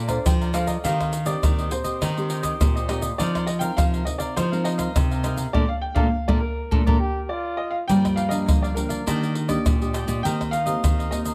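Up-front, close and dry percussion (egg shaker, tight surdo, pandeiro and tamborim played with soft hands) drives this lively, nostalgic samba and choro excerpt at 102 BPM in straight 4/4, moving from Bb major to G minor at 7.9 s. A warm baby grand piano carries the melody with an open, long-sustaining tone and plate reverb, over a crisp, picked cavaquinho, a full-bodied, fingerpicked classical nylon-string guitar with audible finger squeak, and a thumb-plucked nylon-string guitar on bass. The band hits an accent from 5.5 s, and at 7.0 s a bright, punchy, distant trombone with light vibrato adds a brief, forceful jazz-style second line. The whole excerpt is captured with close, detailed microphones and light reverb.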